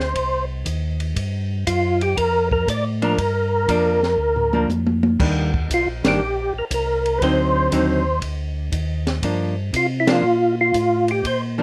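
A swung 4/4 groove from a compact cocktail drum kit, with a punchy kick, a high-tuned snare and a dark, rolled-off top, carries this bluesy, late-night soul jazz organ trio excerpt. A percussive tonewheel organ sings the melody with a round, clean third-harmonic percussion voice, chorus vibrato and a slow rotary speaker, while a mellow tonewheel organ with audible key click holds down the bass through the same slow rotary sound. At 3.0 seconds a picked, hollow-body archtop guitar enters up front with electric accompaniment, and a drum fill plus band accents at 5.9 and 10.0 seconds punctuate the passage under light reverb.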